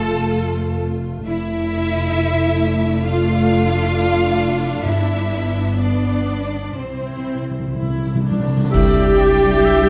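Cinematic, emotional film score for orchestra in C major, moving and uplifting, unfolding slowly at 60-68 BPM in 4/4 with a rubato feel. Bowed strings carry the whole passage: a lush violin section sings the melody from the background with expressive vibrato, joined by a second violin line with a smooth top, while close, even violas fill the accompaniment and focused cellos and up-front double basses anchor the bass. The harmony moves from F through Dmadd9/F to G at 4.9 seconds, where timpani with calf heads and dark, dry cymbals with concert bass drum enter. The harmony settles on C at 6.8 seconds as a timpani fill builds toward the next section. At 8.7 seconds the music opens onto Cadd9 with a full band accent, as a clear solo oboe, a distant clarinet and an airy flute group add brief upper lines over mellow, roomy French horn chords. Light reverb gives the ensemble a gentle sense of space, and the passage is cut from a longer piece.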